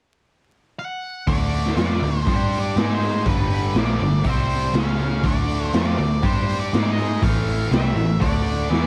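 A straight, driving 4/4 pulse at 121 BPM powers this raunchy blues rock and southern rock power trio excerpt, where a fuzzy octave lead guitar enters at 0.8 seconds before a tight, bright, double-tracked distorted riff guitar, a dark, round, foam-muted picked bass and a gritty, saturated garage drum kit, sitting up front with a punchy kick, join at 1.3 seconds, moving through D5, G5, C5 and A5 power chords under light reverb and vinyl crackle, and a drum fill lands at 8.7 seconds.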